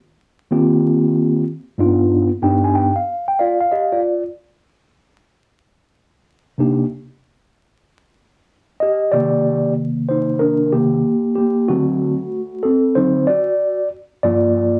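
Smoky and mellow, this short hip hop cut sits at 94 BPM in 4/4 with a swung sixteenth-note feel in C minor. A lone tine electric piano carries it, entering at 0.5 seconds and playing by itself until the close at 14.8 seconds, ranging from G2 up to Ab5. Its tone is mellow and clean, heard through its built-in speakers and placed up front in the mix. A fill arrives between 2.1 and 4.0 seconds, and from 9.1 seconds the piano takes a solo over a repeat of the opening section. The harmony moves through rich extended chords such as Eb69, G7b13 and Cm9 before touching D7 and settling on Gm7. The sound is dry and gritty, with transformer saturation, vinyl crackle, small room ambience and a moderate studio reverb lending it a dusty, lived-in character.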